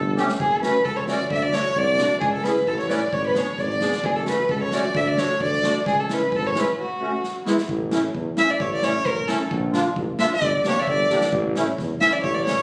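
A dark, woody violin with vibrato carries the soulful melody up front from the opening moment, over a smooth-topped tuba bass, in a festive klezmer excerpt at 132 BPM in 2/4 and F# minor. A reedy, shimmering musette accordion and an airy, polished street-band drum kit with a boomy kick and medium-tuned snare join almost at once, and a break at 6.8 seconds leads into a second section in A phrygian dominant at 7.7 seconds. The phone recording captures the club's reverb, with a moderate spring reverb adding further space.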